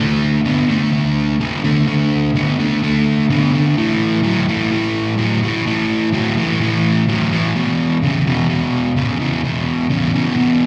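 Rock at 127 BPM in A major with a gritty, swaggering mood, this brief live fragment features a lone sludgy, dark, overdriven electric guitar, picked and double-tracked up front with slapback and tape echo, moving through D5, A5 and E5 power chords across 10.7 seconds, heard through a club PA with a wet reverb.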